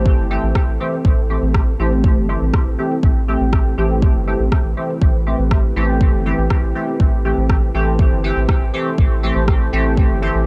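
A dark, warm production with little reverb carries this hazy dub techno fragment, cut from a longer piece and set at 121 BPM in A minor over a single Am7 chord. An up-front, tape-warm electronic kick with a deep low end and a layered rim click, both in a small room ambience, drive the 4/4 pulse, while a round, soft triangle-and-square sub bass pumps beneath them. A bright, juicy polysynth plays resonant, detuned stabs through a filter sweep lasting the whole 10.5 seconds, treated with chorus, phaser, dub echo and sidechain pumping, and from 0.8 seconds a moody, slow-attack sawtooth pad with chorus, reverb and sidechain pumping sustains chords in the background.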